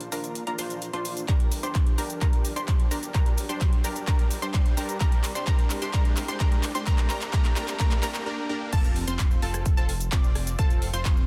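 A background riser, lush detuned pluck arpeggios with delay, a punchy supersaw stab riff under a filter sweep with subtle chorus, and a fat analog bass in the background open this uplifting, anthemic festival progressive house build-up, the synths and bass pumping against the sidechain, over a big-room kit of claps, metallic hats, shaker, rim clicks and crash cymbal; an up-front layered electronic kick joins at 1.3 seconds, a drum fill runs until a short break, and the drop lands at 8.7 seconds in a dense, heavily limited mix with light digital reverb.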